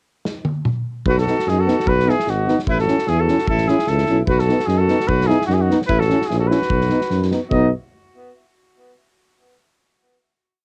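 A swung 2/4 pulse at 148 BPM drives this short, wild and virtuosic Balkan brass band piece in B mixolydian, opening with a loose acoustic drum kit fill of kick, snare and toms in a small, pumping room before the band enters at 1.1 seconds. Up front, a vintage trumpet with light vibrato and a soft attack carries a motif-based melody in period phrases, shadowed mostly in thirds by a close-miked alto saxophone with tape echo, while a mellow tuba plays root-and-fifth bass on the main beats. From 1.3 seconds a distant, roomy trombone and euphonium fill in the group's offbeat chords, all under a cassette home-recording sound with light reverb, before the piece closes on a final chord at 7.5 seconds.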